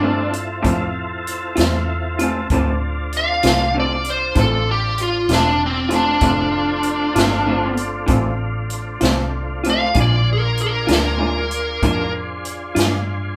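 A smooth, dark, overdriven lead guitar sings the melody up front over a slightly broken-up, lo-fi rhythm guitar with tremolo, a round, foam-muted electric bass and a tonewheel organ holding sustained chords through chorus vibrato and a slow rotary speaker, all from the start of this soulful, brooding slow blues in D minor at 64 BPM in 12/8. A swinging big-band drum kit with a punchy kick and medium-tuned snare enters at 0.3 seconds, and the harmony rests on Dm7 before moving to Bb7 at 10.0 seconds. The band plays live in one room, set in a moderate large studio reverb, in this short cut from a longer piece.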